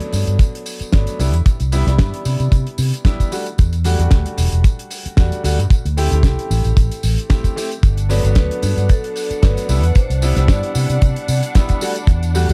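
A lightly swung 16th-note groove at 113 BPM in 4/4 drives this sunny, feel-good nu-disco excerpt in G major, built on a tight, up-front kick, a damped 70s kit with a fat snare, hi-hat and tambourine, and a fingered electric bass whose envelope filter and tube saturation make it bright and amped. A brilliant grand piano with sidechain pumping and analog delay carries chords moving from Gmaj7 through Cmaj9 and Em11 to D7sus4. At 7.8 seconds a dark, con sordino string section adds veiled, bowed chords that also pump, and at 8.1 seconds a metallic, ringing vibraphone struck with hard mallets takes the melody through dub echo, all within a dry, airy, polished drum sound and an echo-heavy small-room mix.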